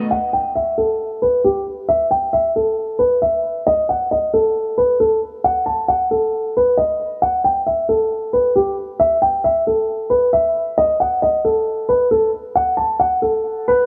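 A dark, mellow concert grand piano carries the melody from the opening moment, sitting up front with a boxy tone and deep bass while a low-pass filter sweeps across it and a digital delay trails its notes between G4 and A5. This menacing hip hop fragment moves at 135 BPM in 4/4 with a half-time feel, tuned to A4 = 439 Hz. Light studio reverb surrounds the piano through the roughly 13.9 seconds cut from a longer piece.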